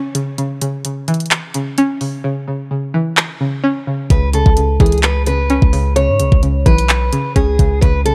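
A half-time trap beat of knocking kick, handclaps and bright hi-hats sits up front in this brooding, menacing hip hop fragment, with a twangy, string-like resonator pluck carrying the accompaniment through chorus and a low-pass filter from the start. The hi-hats drop out at 2.2 seconds during the opening break. At 4.1 seconds a deep, boomy 808-style bass arrives alongside a boxy, picked old ladder-braced acoustic guitar melody, complete with finger squeak, dulled by a low-pass filter and trailed by tape echo, all set in a digital ambience.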